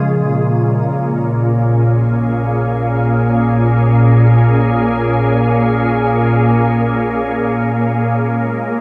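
A soft, organ-like pad sits up front with pure, detuned tones and ensemble chorus, sustaining a Bbm7 chord that shifts to Ab5 near the end of this serene ambient fragment in free time, while a mellow tine electric piano plays brief, very quiet arpeggios only until 1.5 s and a round analog bass holds a deep, dark Bb1 beneath, all set in a vast, echoing cathedral reverb.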